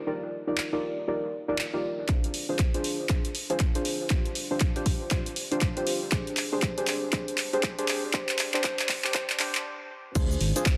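A deep, mellow chord stab opens this smooth, late-night deep house excerpt, its soft, nasal tone layered with a sub octave, treated with chorus and tape echo, pumping against the sidechain and swept by a filter through the first 2.1 seconds over jazzy extended chords. A punchy analog drum machine joins almost at once with handclaps, hi-hat, shaker and crash cymbal, its tape-saturated kit sitting up front with the upper percussion thinned by high-pass filtering. At 2.1 seconds a layered electronic kick drum arrives, re-recorded in a small room, as a build-up with a drum fill and a filter sweep drives the groove with a lazy sixteenth-note swing. A stop at 9.7 seconds briefly clears the space before a dark sawtooth-and-square synth bass with a ring-modulated edge slips in at 10.2 seconds, pumping with the sidechain. A moderate plate reverb glazes the dense, heavily limited mix.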